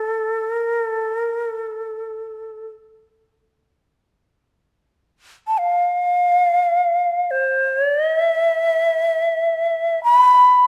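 Lightly reverberant and up front, this meditative, still fragment of Japanese traditional chamber music in free time features a solo end-blown bamboo shakuhachi, breathy and bright with lifted highs, played with vibrato and tongued notes across the range from A4 to B5 for 10.7 seconds, cut from a longer piece.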